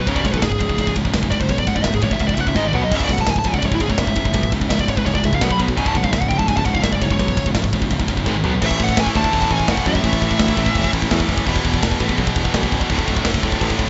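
A relentless straight 4/4 drive from a tight, up-front metal drum kit, with crisp cymbals and drum fills, propels this dark heavy metal excerpt. Two high-gain, picked rhythm guitars, one scooped, churn out the riff alongside a growly, punchy bass, while a distorted lead guitar solos over them until 8.6 seconds. A very quiet pipe organ with chiffy flute stops adds baroque-voiced sustained chords from 2.9 to 8.6 seconds, all set in a light reverb.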